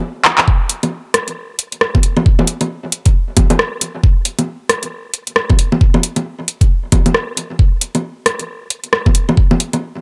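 A swung 16th-note 4/4 groove at 135 BPM drives this rainy, nocturnal future garage excerpt, opening from a brief stop with a drum fill at 0.3 seconds before the knocking electronic kick enters at 0.5 seconds alongside a layered garage kit of bongos, handclaps, rim clicks and metallic hats treated with analog delay, both parts sitting up front with a small-room character inside an echo-heavy mix touched by light reverb.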